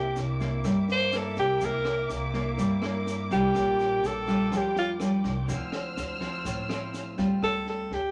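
In a straight 4/4 at 124 BPM, this melancholic, smooth bossa nova fragment in D minor features a breathy alto saxophone soloing up front with light vibrato and a soft attack, over fingerpicked nylon-string guitar with audible finger squeak, woody pizzicato upright bass with a thumpy gut-string tone, a lush, dark bowed string section holding chords until 7.4 seconds, an open jazz kit with boomy kick, rim click and high-tuned snare, and a grainy egg shaker in the background, all set in a small, reverberant room.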